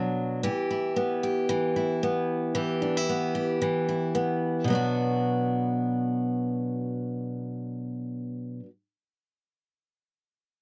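A picked steel-string acoustic guitar carries this brief pop excerpt alone, sounding full-bodied and up front as it plays accompaniment from the start until 8.7 seconds, ranging from B2 to G4. The mood is reflective and tender, set at 113 BPM in 4/4 with a light swing on the sixteenths, in B minor with tuning slightly below standard at A4 = 438 Hz. The harmony moves from E minor near the opening to B minor at 4.7 seconds, where a second section begins. The sound is dry and close, in the manner of a 1970s studio recording, with a moderate booth ambience that keeps the room small and intimate. Cut from a longer piece, the passage feels like a quiet, unadorned glimpse of a song in progress.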